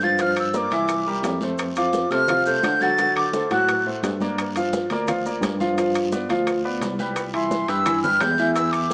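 A breathy, reedy concert flute carries the melody over a brilliant, up-front baby grand piano and a barky, gritty tine electric piano bass with fast tremolo, while very quiet bongos, congas, raspy guiro and grainy maracas drive a passionate salsa groove at 172 BPM, with ringing timbales joining at 0.2 seconds and woody claves just after, the flute falling silent at 3.8 seconds before returning at 7.3, the whole heard through a wet plate reverb with a small-speaker sound.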